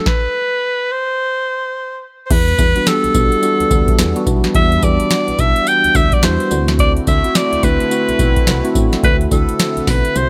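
A swung 16th-note groove at 107 BPM in 4/4 drives this confident, punchy new jack swing excerpt in E minor, with a booming, tape-toned analog drum machine up front (deep kick, tonal snare, metallic hi-hats, tambourine and crash) and a stop in the opening bars before the solid, round FM bass enters at 2.3 seconds. A bright, up-front alto saxophone carries the pop-style solo melody with light vibrato and scooped notes over a mellow, clean tine electric piano. In the background, a sweeping, resonant, detuned pad with chorus and a filter swell sustains the harmony as it moves from Em9 to D9 at 6.5 seconds, all in a dry, close sound.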